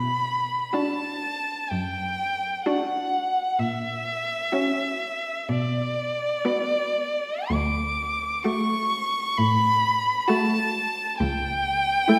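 Melancholic and elegiac, this slow, rubato classical string quartet movement in B minor, cut from a longer piece, opens with an up-front cello holding the bass and a first violin singing the melody high above with vibrato and portamento, joined at 0.7 seconds by a bright, focused viola accompaniment and a smooth, background second violin line, all bowed by single players in a wet recital hall whose reverb lingers around the chords moving from Bm through F#7/A# and D to a rootless A7/C# near 11.2 seconds.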